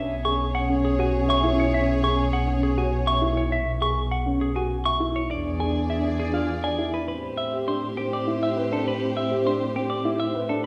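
A bright, compressed electric guitar carries the melody up front from the first moment, joined by a mellow French horn with light vibrato in the background, a rich bowed string section holding sustained chords and a smooth, bowed double bass played by one player close at hand, while a warm grand piano enters at 0.2 s with arpeggios in this meditative yet urgent minimalist classical pattern piece at 101 BPM in 3/4, moving from C#m/B through E7 to Am7 as it settles into A minor at 7.1 s, heard from further back in a reverberant recital hall in a fragment cut from a longer work.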